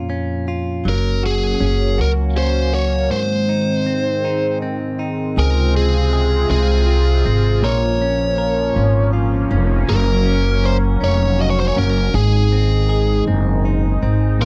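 A biting, overdriven lead guitar carries the melody from 0.9 s, its bright picked line sitting up front in this swaying, heartfelt pop ballad in 6/8 at 53 BPM in Db major. Underneath, a woody pizzicato upright bass with steel strings holds the low end throughout, while a clean, twangy electric guitar, recorded direct and compressed, picks out the accompaniment from the opening. At 0.9 s a sweeping, resonant pad joins with sustained chords, its detuned sawtooth tones, sub octave and chorus giving a slowly evolving shimmer with long release. The harmony moves through Bbm, Gb and Ab before the second section at 5.4 s opens on Dbmaj7 and cycles back through the same chords. The sound is dry and close, like a 1970s studio session, and this is a cut from a longer piece.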